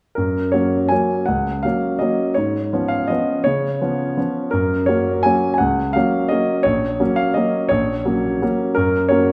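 A smooth, vintage-toned grand piano sits up front as the solo voice in this short classical waltz, an excerpt cut from a longer piece with an elegant, sparkling mood. Played in three with rubato and an unevenly placed beat, it moves from the home chord through a dominant seventh and back, spanning the low bass register up into the upper treble. A wet recital hall reverb surrounds the piano, giving it a spacious, concert-room bloom throughout its roughly 9-second run.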